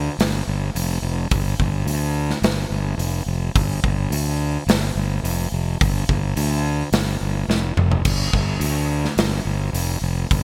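A straight 4/4 hard rock groove at 107 BPM drives this powerful, swaggering clip, cut from a longer piece, with a big acoustic rock drum kit entering at 0.2 seconds, its punchy kick, medium-tuned snare, hi-hat, toms and bright crash cymbals sitting up front in a studio room. A growly, overdriven fuzz electric bass, fingered and up front, holds down the low end from the very start, ranging from F1 to D2. A drum fill at 7.5 seconds stands out, and the whole is framed by light reverb and a bright 1980s-style digital production.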